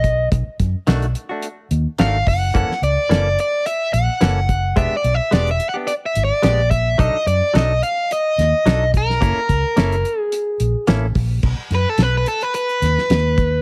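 Straight-eighth soul blues at 108 BPM with a gritty, swaggering mood, cut from a longer piece, built on a dry, damped 70s drum kit with a fat snare, tight kick and dark cymbals, and a round, foam-muted vintage bass played with the fingers, both sitting up front in a small room. An overdriven, picked electric guitar carries the melody over B7#9, F#7#9 and E7#9 changes, while a direct-recorded clean guitar adds bright, twangy, compressed stabs with a warbly pitch drift from 0.9 to 11.1 seconds. At 11.4 seconds the chord settles on B and the overdriven guitar breaks into a solo.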